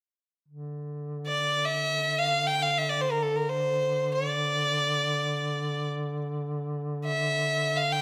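A rough home demo mix with a moderate plate reverb frames this hypnotic, soulful Turkish fragment in free time, set in makam ussak on D with tuning at A4 = 439 Hz. A mellow duduk holds an up-front folk-style drone on D3 from 0.5 seconds, colored by vibrato and scooped notes. At 1.3 seconds a single close, bowed violin enters with a clear, smooth and even melody between A4 and G5, its vibrato trailed by a slapback echo.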